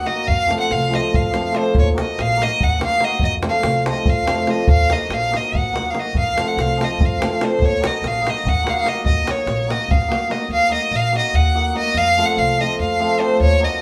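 A driving 7/8 pulse at 288 BPM in eighths, played straight, propels this fiery excerpt of Balkan wedding-band folk, cut from a longer piece. A single bowed violin carries the virtuosic melody up front, its tone rich and focused with vibrato, in Eb Dorian with a sharpened fourth and tuned to A4 = 439 Hz. Underneath, a hammered cimbalom fills in shimmering, ringing accompaniment, while an acoustic upright bass with steel strings gives a woody, thumpy pizzicato foundation. A tight, close and dry davul drives the percussion until it drops out at 10.5 s, leaving the strings to carry the phrase to its end at 13.8 s. The harmony swings between F and Ebm, and the band, recorded live in one room, sits in a wet studio reverb.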